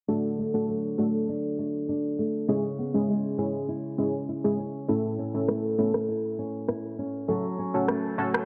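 A small room with light reverb and a low-pass filter frames this hypnotic, tough dancehall clip at 100 BPM in a straight 4/4, with a filter sweep running through its full 8.5 seconds. An up-front, punchy chord stab with sawtooth and square-wave bite, a sub octave, chorus and a fast-attack pluck that decays carries the D, C#m, A and F#m changes, while an acoustic, fingerpicked flamenco guitar plays arpeggios with audible finger squeak. An electronic rim click with a produced, tape-warm character joins at 5.5 seconds.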